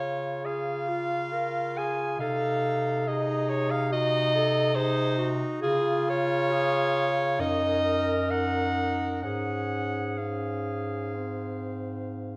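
Classical chamber music for a single-reed quartet, this tender, lyrical passage is cut from a longer piece and moves with a gentle rubato in 4/4. A clarinet carries the melody up front, its tone warm and present as it sings in its upper-middle range. Beneath it, a clear alto saxophone with a soft attack adds a close, intimate second line. A second clarinet, darker in colour with a smooth top, joins at 0.4 s to fill in the accompaniment. The bass clarinet anchors the harmony from below with a warm, gently attacked tone, and a recital hall's generous reverb surrounds the quartet with a soft glow.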